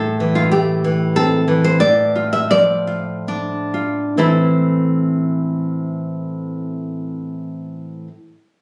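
Melancholic and intimate, this brief romantic passage for solo classical guitar sits in A minor and moves in a rubato 3/4, drifting between 64 and 96 BPM and slowing down through its first 4.2 seconds. The fingerpicked nylon-string guitar sounds dark, woody and full-bodied, with the character of old strings, and ranges from A2 to E5, up front in a light reverb as it moves from Am to Dm/A at 1.8 seconds and back to Am at 4.2 seconds. The phone-captured sound and the clip's ending at 8.1 seconds mark it as a fragment of a longer piece.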